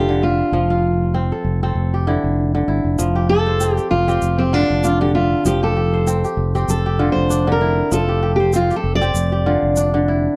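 A dark, full-bodied steel-string acoustic guitar plays the fingerpicked melody with audible finger squeak. A bright, ringing kora adds crisp arpeggios, and a growly overdriven electric bass underpins them, all up front in this warm, flowing West African string music at 97 BPM in F major, with a gentle swing over shifting F and Dm/F harmony. At 3.0 seconds a grainy egg shaker enters as the guitar moves into a solo, all captured in a dry, close 1970s-style studio sound from a longer piece.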